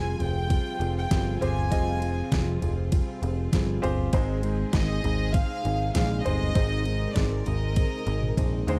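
A dry, close recording in a 1970s studio style frames this hopeful, piano-driven pop excerpt at 99 BPM, moving from Fmadd9 to Ab at 4.1 seconds. An overdriven, layered pop drum kit with a knocking kick and deep snare enters at 0.2 seconds, up front alongside a dark, round picked electric bass, while a full-bodied fingerpicked steel-string acoustic guitar plays a riff and a clear, polished concert grand piano accompanies from the background. A soft-attack violin section floats the melody above lush sustained chords from a string section rich in vibrato, and a drum fill from 7.8 seconds closes the passage.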